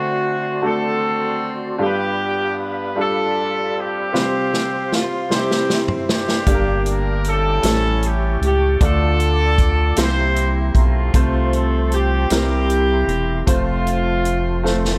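With light reverb, this slow, reverent and soulful 6/8 gospel piece at 51 BPM sets a warm, roomy horn section up front on the melody over a bright baby grand piano and a mellow, flute-like tonewheel organ holding sustained chords in the background through slow rotary speaker and chorus vibrato, before a swinging big-band drum kit with a punchy kick enters on a fill at 4.1 seconds, a rubbery, hollow square-wave bass joins at 6.5 seconds, and piano and drums share a fill at 14.6 seconds as the chords settle on F.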